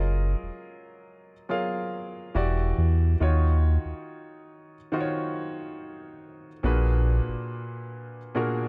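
A deep, round, detuned analog bass sits up front until 7.4 s beneath a natural-sounding baby grand piano with short sustain that plays accompaniment chords moving from Gbmaj13 through Em9 and Ebm9 to Bb7b9b13, giving this brief, moody and sensual R&B fragment in Eb minor at a slow 70 BPM a dark studio atmosphere with studio reverb.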